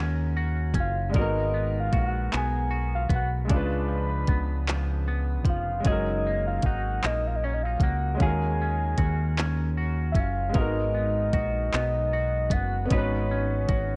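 A slow six-eight R&B groove at 51 BPM in a straight feel sets a yearning, sultry mood in G# dorian, with a smooth electronic drum kit entering at 0.7 s: a soft kick, warm hi-hat and handclaps sit up front. Beneath it, a deep dub fingered electric bass gives a dark, round and punchy low end, also placed close and forward. A clear baby grand piano provides intimate accompaniment with audible action noise, while a semi-hollow electric guitar adds a clean, picked second line with a scooped, compressed tone and analog chorus. Over the top, a soft octave-layered synth lead carries the melody, its detuned sawtooth and triangle layers thickened by a sub octave, chorus and vibrato into a full, sustained voice. The harmony moves through rich chords such as D#m11, G#m9, C#7b9 and F#69, and the whole piece sounds dry, worn and warbling, like old cassette tape with drifting pitch and a dulled top end, cut from a longer piece.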